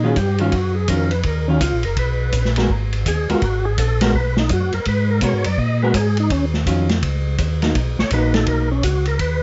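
Bluesy and late-night, this soul jazz organ trio excerpt swings at 166 BPM over Ebm9, Abm9 and Bmaj7 chords. A fat, lightly overdriven tonewheel organ takes the solo with key click, percussive attack, chorus vibrato and a slow rotary speaker, while a clean, picked hollow-body electric guitar comps until 8.7 seconds and a round, mellow second tonewheel organ carries the bass up front through its own slow rotary and vibrato. An acoustic vintage kit joins at 0.2 seconds with a punchy kick, medium-tuned snare, hi-hat and dark ride cymbal, all in a dry, shadowy mix with a rolled-off top.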